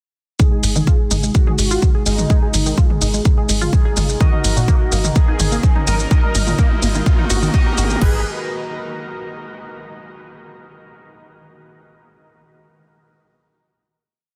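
Melancholic and dark, this short melodic techno piece at 126 BPM is one long build from 0.4 s to 8.0 s that resolves onto a final chord, moving from G#madd9 to D#m/G# and back. Up front, a punchy, tape-warm house kit drives a four-on-the-floor kick with crash accents, while a programmed analog drum machine adds open hats, shaker and mid toms, and a drum fill runs through the whole build. A tight, driving sequencer bass holds G#1 with off-beat, decaying plucks under sidechain pumping, and a detuned sawtooth sequence repeats a 16-step arpeggio through chorus and digital delay. A smooth supersaw riff sits in the background with tape echo and a filter sweep, alongside an edgy sync-sweep polysynth whose bright, nasal power-voiced chords make syncopated pushes as its own filter sweeps. Near the end a deep, moody ambient pad enters at 6.3 s with slow-attack chords, 12-bit grit and reverb, a very quiet riser having crept in from 3.9 s, all inside a dense, heavily limited master with digital ambience.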